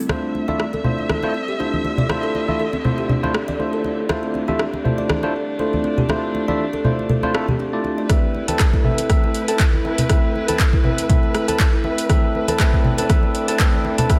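Driving and warm, this afro house excerpt is a build-up where rich, bowed chamber strings hold sustained chords and a woody, thumb-plucked kalimba ripples through delayed arpeggios, both pumping against the beat. A barky, up-front tine electric piano adds delayed stabs, while from 0.1 seconds an overdriven deep house kit of metallic hi-hats, handclaps and rim clicks joins close, soft-handed congas, with a round analog bass barely audible beneath. At 8.1 seconds a deep, overdriven electronic kick punches in up front as the harmony moves from Dm7 to Amadd9, all in a small, lightly reverberant room.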